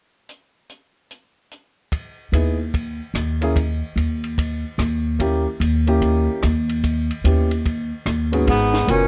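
A swung 4/4 at 146 BPM opens this moody, cool piece of small-group swing and bop, with a compact cocktail drum kit starting at 0.3 seconds on hi-hat, kick, ride, rim click and snare, sounding dry with dark cymbals, a high-tuned snare and a punchy kick. At 2.3 seconds a grand piano and a pizzicato upright bass join, the piano natural and up front in accompaniment, the bass woody and close as it holds the low register. The harmony moves through a rootless C#m7 and D#7b9 and D#7b13 chords toward a G#m11. At 8.5 seconds, just before this short fragment of a longer piece breaks off, a clear, vintage-toned tenor saxophone takes the melody with light vibrato and scooped notes. A baritone saxophone adds a second line, its subtone and soft attack set back in a roomy, distant space. The production is dark and warm, with little reverb.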